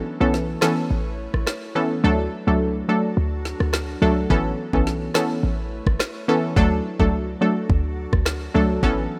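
A glassy FM pad opens this summery, bouncy dancehall excerpt in D major at 106 BPM, its detuned, ethereal chords sitting in the background with ensemble chorus, a long release and a sidechain pump. From 0.2 s a round analog pluck with a filter sweep and chorus carries the accompaniment up front, with a punchy, tight 808-style bass entering alongside it and an electronic island pop kit following at 0.3 s with a knocking kick, woody snare and rim click. The harmony moves between Aadd9 and D, with a break running until 4.3 seconds, all in a rough home demo mix with light reverb.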